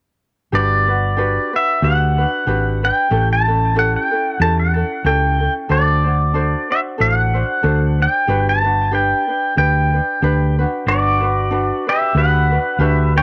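Sunny and languid, this short Hawaiian excerpt in G major drifts along at 93 BPM in 4/4 with a gentle swing on the eighth notes, cut from a longer piece. A bright, clean pedal steel guitar carries the melody up front from 0.6 seconds, played with fingerpicks and slide, compressed, with volume swells and a tape echo giving its lines a cassette-worn shimmer. Beneath it, a dark, round hollow-body short-scale electric bass, fingered and amped, sits equally forward from 0.5 seconds and anchors the low end. A light, fingerpicked acoustic ukulele adds soft accompaniment further back, colored by cassette tape and plate reverb. The harmony moves from Gmaj7 through A7 and D7 before returning to Gmaj7, and the whole home cassette recording carries a light reverb that suits its relaxed, homespun charm.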